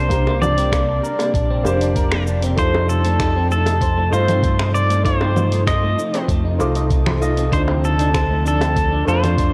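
A bright, twangy pedal steel guitar with slide and volume swells carries the melody up front through delay and shimmer reverb in this smooth sunset chillout excerpt, over a mellow dark baby grand piano, slightly broken-up electric guitar arpeggios in the background, an ethereal detuned pad with 12-bit sampler grit, a round, punchy fingered electric bass, a thumpy electronic kick and a deep house kit of congas, finger snaps, hi-hat and shaker that enter at 0.1 seconds, and tight high-tuned bongos, moving from Bb69 to F7 to Dm7 in a lush hall and worn, warbling cassette tape.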